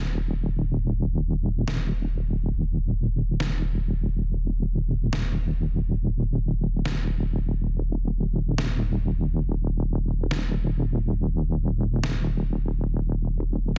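A dark, detuned sawtooth wobble bass with chorus sits up front through this brooding, cavernous deep dubstep fragment, reaching down to Eb1, while a gritty, pitched-down electronic snare with studio reverb joins at 1.7 seconds and stops at 12.1 seconds, framed by digital ambience and a dense, heavily limited modern master.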